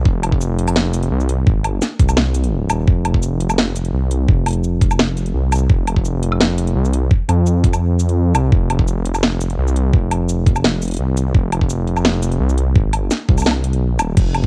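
Dry and close, this home cassette recording captures an excerpt from the drop of a heavy, cinematic half-time drum and bass piece in F minor at 170 BPM, where a deep, rumbling, detuned sawtooth bass sits up front alongside a tape-colored knocking electronic kick and a layered kit of cracking snare, metallic hi-hats, shaker, woodblock and crash cymbal, the drums re-recorded in a small room.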